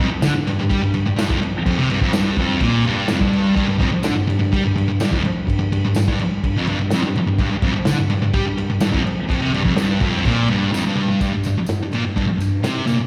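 Swaggering and raw, this short garage rock cut at 126 BPM is driven by a thick, double-tracked fuzz guitar riff that sits up front, backed by a muffled, lo-fi vintage drum kit with a tight kick and crash, ride, snare and toms, plus a jingly tambourine far in the background, all heard as a live gig through the venue's PA in a lush hall reverb, with a drum fill at 10.7 seconds leading into a new section at 11.2 seconds.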